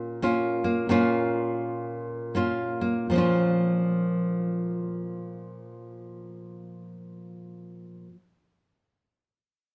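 In a lilting 3/4 with a swung eighth-note feel at 78-89 BPM, this brief, haunting and wistful folk excerpt in Bb minor features a solo fingerpicked nylon-string guitar, up front with a classical touch and the warm tone of fresh strings, ringing over a Bbm chord through a moderate studio reverb, easing its pace in the opening 3.1 seconds before moving into a second section that runs to 7.7 seconds.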